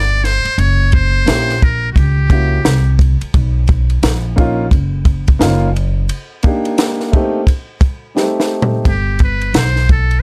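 This jazz-hop excerpt moves at an unhurried 87 BPM in 4/4 with a swung sixteenth-note feel, setting a nocturnal, mellow mood. A trumpet with a metal mute carries the melody, buzzy and thin with light vibrato and a soft attack, sounding from the start until 3.0 seconds and returning at 8.9 seconds. Underneath, a woody upright bass played pizzicato anchors the low end throughout, while a compact cocktail drum kit enters at 0.2 seconds with a punchy kick, high-tuned snare, dark cymbals, hi-hat, ride and toms, topped by a drum fill just before the trumpet comes back. A dark baby grand piano fills the middle with smooth, vintage-toned accompaniment and long sustain. The harmony moves through rich jazz chords from D7sus4 and F#7b9 to Bmaj9#11 and Cm7 before settling on Gadd9. The sound is dry and close, with little reverb and the bass, drums and piano placed up front.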